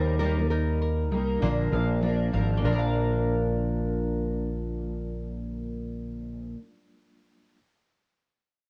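This easy-going, carefree acoustic pop excerpt opens with everything at once: a fretless electric bass sits up front with a direct, amped tone, beside a double-tracked, full-bodied fingerpicked steel-string dreadnought guitar. A deep classical nylon-string guitar with fresh strings carries the melody from the background, colored by cassette tape and analog delay, while a round, double-stringed mandolin picks arpeggios through plate reverb and its own analog delay. Underneath, a reedy, lightly overdriven electric piano heard through its built-in speakers stays very quiet. The harmony moves from Eb to Bb at 1.4 s over a relaxed 4/4 groove with a gentle sixteenth-note swing. The strings and bass drop out around 6.5 s, leaving the electric piano to linger alone until 7.6 s in a lightly reverberant home cassette recording.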